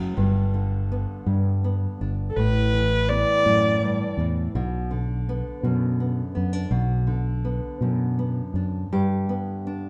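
A rich, bowed viola played by a single player carries a brief solo from 2.3 to 4.2 seconds, its focused tone, smooth top and vibrato sitting up front in the mix. This short folk passage, cut from a longer piece, moves at a slow 55 BPM in a straight 6/8 and feels heartbroken and intimate, with tuning set to A4 = 437 Hz. Beneath the viola, a fingerpicked nylon-string guitar with a classical character plays the accompaniment across the whole passage, its finger squeaks audible close to the ear. A fretless electric bass, round and punchy with a direct, amped sound, holds the low end from 0.2 to 8.8 seconds. The harmony moves from G to Asus2 and then Bm before returning to G, all wrapped in a light reverb.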